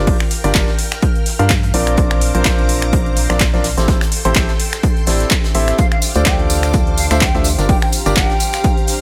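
This excerpt of soulful, energetic piano house opens at once with a warm concert grand piano riff, an organ-like FM bass and a string machine of violins, all three pumping against the sidechain at 126 BPM in D minor with a light swing on the 16ths. The piano sits present and polished, with audible action noise, deep bass, long sustain and a touch of tape echo, while the hollow, dark bass has a fast attack that decays. The bright, shimmering vintage sawtooth strings hover in the background through an ensemble chorus, and a very quiet granular cloud pad drifts underneath, blurred, detuned and mellow. The drums arrive almost immediately: an overdriven, punchy electronic kick up front, an overdriven analog drum machine with finger snaps, handclaps and hi-hat, and a very quiet acoustic kit whose hi-hat and medium-tuned snare are played with bundle sticks in a small room. At 5.8 seconds a distant, airy silver flute enters with a straight tone, crisp attack and tape echo, alongside a tambourine in the background, as the chords move from Gm7 through Bbadd9, Am7 and Dm7 and back to Gm7.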